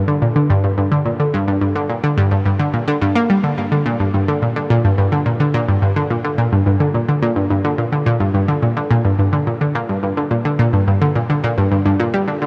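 A lone analog pluck opens this cosmic, mysterious ambient passage, sounding by itself from the very start and carrying it through to the cut at 12.5 seconds. Set in G minor at a straight 107 BPM in 4/4, the synth moves within a low-to-middle register, from G2 up to Bb3. Its tone is round and bright, built from sawtooth, square and triangle waves with a noise layer, ring modulation and a filter sweep, and each note has a fast attack and short decay. Chorus and delay thicken the pluck, which sits up front in the mix. A huge ambient reverb, with a 7.2-second decay, surrounds it in a vast, hazy space, and the clip is clearly lifted from a longer piece.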